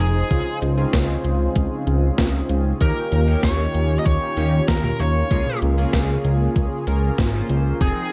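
Nocturnal and driving, this synthwave excerpt moves at 96 BPM in a straight 4/4 over a dark production and a Dbmaj7, Eb7 and Bbm7/Db progression. A smooth overdriven electric guitar carries the picked lead melody through tape echo above a mellow, detuned analog pad that breathes with chorus and sidechain pumping, while a fat, nasal sawtooth bass sits up front with a saturated filter pluck. From 0.3 seconds, glossy chorused polysynth stabs shimmer with phaser and tape echo, and a thumpy overdriven electronic kick joins a sampler-style 80s drum machine whose hi-hat, toms and gated-reverb snare carry a gritty edge.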